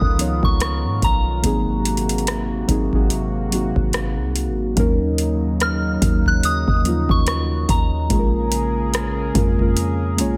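A booming analog drum machine sits up front in this moody contemporary R&B excerpt, its deep kick, metallic hi-hats and rim clicks setting a slow 72 BPM groove in 4/4 with a light sixteenth-note swing. Beneath it, a boomy 808-style bass with a rounded sine tone anchors the low end in Eb minor. Muted, felt-like synth keys carry the accompaniment with an intimate, dark, full-bodied sound and a touch of chorus, while a shimmering, retro pulse-width pad holds sustained chords that pump under sidechain compression. Floating high above, a soft, pure FM bell sings the longing melody through chorus, phaser and digital delay before it drops out at 9.3 seconds. The harmony moves from Db13 to Ab9, Ebm7 and Bbm7, and light reverb gives the whole a hushed, nocturnal glow.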